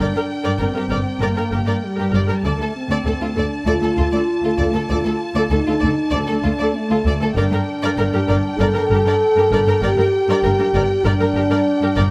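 Relentless and dramatic, this cinematic orchestral fragment sets a focused, lush symphonic violin section singing a high melody over a second, expressive violin line and smooth, even violas, while a mellow, soft-attacked French horn section holds prominent sustained chords through Gm, Dm and back to Gm at 7.4 seconds, and rich cellos and distant double basses anchor the bass with vibrato, all captured by close, detailed microphones in light reverb.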